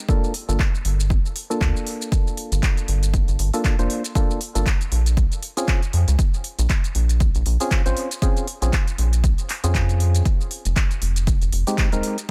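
A swung 4/4 groove drives this deep house excerpt, built on a punchy, overdriven electronic kick sitting up front and a smooth, layered kit of handclaps, hi-hat and shaker in a studio reverb. A rubbery, nasal square-wave bass enters at 0.5 seconds, bouncing with a dark, resonant filter pluck and sidechain pumping. Above it, mellow, hollow organ-like stabs with chorus and dub echo move through a filter sweep across Gm7, Bbm7 and Fm7, giving the echo-heavy mix a deep, warm mood.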